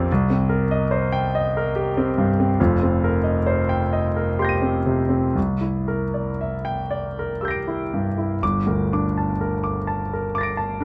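Wistful and hazy, this short cut from a longer impressionist solo piano piece drifts in 3/4 at a rubato 58-74 BPM in G minor. A clear, intimate grand piano plays alone, spanning F1 to Eb7, with audible action noise and a polished, up-front presence. Its harmonies move from Cm7 through F9sus4 and C9 before settling on Gmadd9 at 8.4 seconds as a new section begins, all captured with close, detailed microphones and light reverb.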